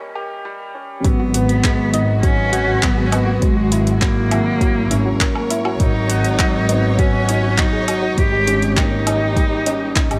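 A layered electronic kick and a deep house kit of handclaps, metallic hi-hats and woodblock drive a straight 4/4 pulse at 101 BPM, arriving at 1.0 s when the drop lands after a brief piano-led break and build-up. This piano and strings electronica piece in G# minor feels moving and intimate, its drums tape-warm and produced. A dark, worn baby grand piano with long sustain opens alone, playing a mellow riff through digital delay. A distant, bowed solo cello carries the melody with vibrato and portamento, while an earthy chamber double bass section holds a low G# and a lush symphonic string section sits in the background with sustained chords, both shaped by sidechain pumping. A very quiet, round pluck with chorus adds gentle arpeggios from 1.2 s, and the harmony moves from G#m7 through F#7/G# and B6/G# to D#7/G# in a small, lightly reverberant room.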